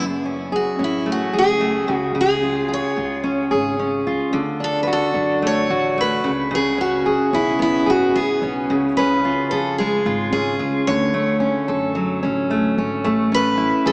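A picked jumbo steel-string acoustic guitar carries the melody up front with a full-bodied tone, entering at 0.6 seconds over a dark fingerpicked dreadnought guitar that plays the accompaniment from the start. This reflective, wistful acoustic pop excerpt moves at 110 BPM in a straight 4/4, with a woody, growly pizzicato upright bass sitting in the background. The whole passage sounds as if played in a vast, echoing cathedral through a small speaker, drifting through F#madd9, C#, D and Dmaj7 before settling on A.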